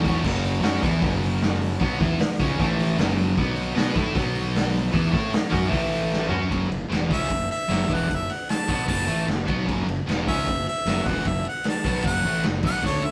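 Raw and gritty, this garage rock excerpt drives along in a straight 4/4, captured as a rough rehearsal-room recording with light reverb. A crunchy, double-tracked electric guitar sits up front, picking a bright overdriven riff built around power chords that shift among F#5, A5 and B5. Beneath it, a fingered electric bass adds a round, dark fuzz tone, while the acoustic drum kit is punchy and saturated, with a medium-tuned snare, a rolled-off top and the ambience of a stone room. A drum fill at 6.1 seconds leads into a new section on F# minor at 6.5 seconds. From 7.1 seconds a close-miked harmonica takes the melody up front, its overdriven solo bright and edged with light vibrato.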